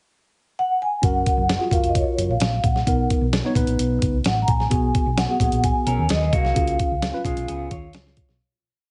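This is an uptempo, 1960s-style soul piece in F# major at 130 BPM, with a joyful, straight 4/4 feel. A vibraphone played with soft mallets opens alone with a pickup at 0.6 seconds, its mellow, ringing tone and fast motor vibrato carrying an up-front, motif-based melody of call phrases. At 1.0 seconds the band enters on a verse that moves through F#maj7, Bmaj7, G#m7 and C#. A gritty, sampler-style drum kit with a thumpy kick and a medium-tuned snare plays a backbeat soul groove up front, while a dark, round hollow-body bass weaves a syncopated, melodic line with chromatic approach notes. A bright tine electric piano pushes close-voiced chords with grace notes, and at 5.9 seconds a slightly broken-up electric guitar through a small old amp adds short picked fills in sixths between phrases before the whole piece fades out. Light reverb and a heavily compressed, radio-like sound give the recording a dusty, vintage character.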